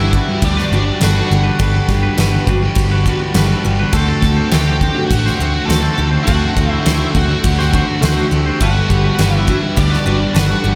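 An octave-fuzz lead guitar carries the melody in this blissful, hazy shoegaze and dream pop excerpt, its dark distorted tone trailing analog delay over a thick fuzz guitar riff thickened by lush chorus and a bright, twangy clean electric guitar riff dissolving into reverse reverb. A shimmering, octave-doubled twelve-string acoustic guitar picks arpeggios in the background through ensemble chorus and delay, with an audible finger squeak. A round, foam-muted vintage bass and a huge arena drum kit with a fat snare, punchy kick and crash cymbal anchor the Gmaj7 to D7 movement, all soaked in a dreamy hall reverb.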